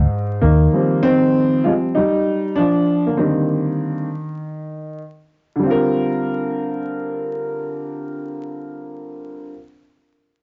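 Swung sixteenths at 98 BPM in 4/4 carry this nocturnal, mellow hip hop fragment in C minor, where a worn, boxy grand piano with long sustain and cassette-tape colour moves through Eb69, Cm9/D and Csus2 from 0.0 to 9.6 seconds, a round, punchy muted electric bass sounds Eb2 up front in the first 0.7 seconds, and a small room, vinyl crackle and dulled home-cassette highs give the whole piece a lo-fi haze.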